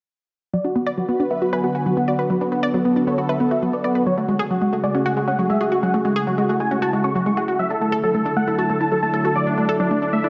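Trance at 136 BPM in straight 4/4, tuned to A4 = 439 Hz, this soaring, uplifting passage from a longer piece moves through Bm, F#madd9 and Dadd9. Huge, detuned supersaw chords carry the melody from 0.5 seconds under a filter sweep and digital delay, while a round, warbling analog pluck spins arpeggios with chorus and delay. A thick unison pad with slow attack and long release enters at 0.7 seconds with chorused sustained chords, and a lush hall reverb with a 2.4-second decay surrounds the mix.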